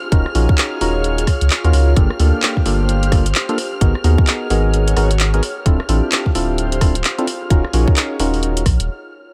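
Set in a digital ambience, this moody, soulful two-step UK garage excerpt in swung 4/4 puts a tight, up-front electronic kick and a deep, saturated sub bass at the front, with a garage drum kit of handclaps, rim clicks and warm hi-hats, hollow organ-like stabs trailed by digital delay, and a silky vintage string machine and airy, breathy pad held in the background with sidechain pumping, before a brief stop at 8.9 s.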